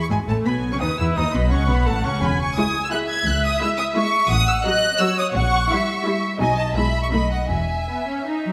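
A warm, up-front violin section opens at once with the melody, its bowed line carrying vibrato and a smooth, focused top, soon joined by the violas, cellos and double basses at 0.1 seconds. This is a quick, cheerful classical-period movement for string orchestra in triple time, lively yet shaped with a flexible, rubato feel. A second violin section enters at 0.5 seconds with a supporting line, sounding rich, even and distant, while the clear violas fill in the accompaniment. The cellos sit in the background with a smooth, lush tone, and the double basses stand out up front to anchor the low end. Harmonies move through a progression in E major, with a diminished chord adding a touch of tension before the phrase settles home, and the basses drop out at 7.8 seconds as this brief cut from a longer piece closes. A moderate scoring-stage reverb gives the ensemble a natural sense of space.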